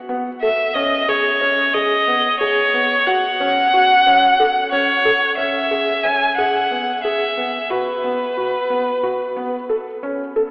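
Soft, mellow arpeggios on a felt-muted upright piano, its action noise audible, open this hypnotic, urgent contemporary instrumental excerpt in 7/8, joined at 0.4 s by a single up-front bowed violin whose rich, vibrato-laden melody moves over chords such as F#m and C#m7 until 9.7 s, all set in a cavernous cathedral reverb with a telephone-like sound, before the piano stops at 10.5 s.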